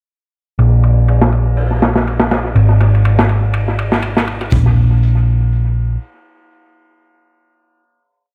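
A dark, round hollow-body electric bass sits up front in this short, raw and funky breakbeat piece, picking a skipping, syncopated line low in its register from 0.6 seconds. Beside it, a crunchy acoustic breakbeat kit plays a looped break with edits, its tight kick, medium-tuned snare, hi-hat, ride cymbal and toms all passed through low-pass filters that roll off the top and leave the cymbals dusky. The kit is saturated and gritty, mid-forward in its own studio room, with tape echo adding repeats behind its hits. The drums drop out at 4.6 seconds, and the bass carries on alone until 6.0 seconds as the final note rings out. A light reverb and an echo-heavy mix give the track a loose, lingering swing.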